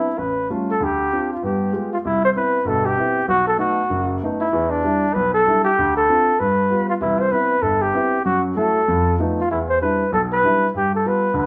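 Relaxed and swinging, this jazz excerpt moves at 193 BPM in C major, with a mellow, vintage-toned flugelhorn carrying the melody up front, colouring its notes with vibrato and scoops. A warm, intimate grand piano accompanies throughout with long sustain and audible action noise, moving through chords such as A7b13, G7b9, Cmaj7 and F7#11. The pair play together live in one studio room, its wet reverb adding natural depth, and a new section begins at 2.0 seconds before the clip is cut off at 11.5 seconds.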